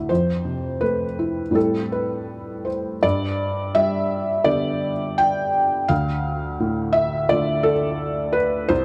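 A moderate plate reverb with a 3.5-second tail surrounds this short excerpt, cut from a longer piece, and the close-up piano sits up front in an intimate space. It is neoclassical minimalist piano music, reflective and wistful, moving at a loose, rubato 84 BPM in 4/4. A felt-muted upright piano plays alone for the full 8.8 seconds, its tone mellow and muffled, with the natural clicks and thumps of its action clearly audible. The harmony drifts from Fmaj7 to Am7, then shifts at 3.0 seconds into a second passage that settles on G before turning to Dm near the close. The playing spans from deep bass notes to the upper middle of the keyboard, giving the brief fragment a quiet, private feel.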